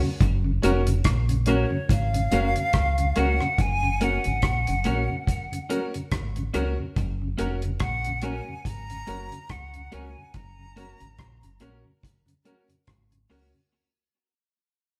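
A mellow tonewheel organ with key click and a slow rotary speaker opens this sunny, uplifting roots reggae passage at 71 BPM in F# major. It is soon joined by a round, punchy fingered dub bass and a dry, dark drum kit of tight kick, hi-hat and rim click with tape echo, both up front, while a clean, compressed electric guitar with tape echo and clear grand piano stabs enter from 0.6 seconds. An airy silver flute carries the expressive melody with vibrato and tape echo from 1.5 to 11.6 seconds, the whole band swinging its sixteenths together in a moderate stone room over an F# chord as the cut fades out throughout.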